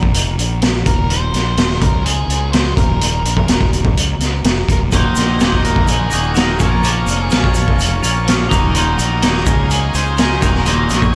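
Psychedelic rock with a dark, trippy mood, this excerpt opens on a raw garage drum kit with a boomy kick and high-tuned snare alongside a round, punchy fuzz fingered electric bass up front, joined at 0.9 seconds by a distorted octave-fuzz lead guitar carrying the melody through delay. At 4.9 seconds a scooped twangy electric guitar plays a riff through flanger, a buzzy overdriven combo organ holds sustained chords with light vibrato in the background, and a grainy egg shaker sits distant. The mix is dreamy and soaked in huge reverb.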